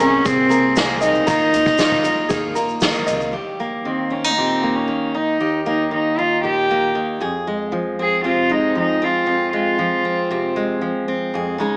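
Indie folk with a building arrangement, this nostalgic passage moves at 116 BPM in a straight 4/4, set in Eb mixolydian. A distant, reedy bowed cello with a gut-string, period-style tone carries the melody up front from the start, over a bright dreadnought guitar picked on fresh strings and a light, thumb-plucked ukulele playing arpeggios, both touched with plate reverb. Underneath, a woody, growly pizzicato upright bass sits in the background, a soft-mallet drum kit with a boomy kick and medium-tuned snare adds natural hall ambience, and a grainy tube shaker hovers faintly behind. At 3.3 seconds that opening band falls away, and a full-bodied jumbo guitar, fingerpicked with audible finger squeak, comes up front beneath the cello as the chords settle from Abadd9/C and Ebsus2 onto Eb and then Fm. The cello stops at 10.5 seconds, leaving the fingerpicked guitar alone to close this warm excerpt, all heard through a moderate studio reverb with a small-speaker character.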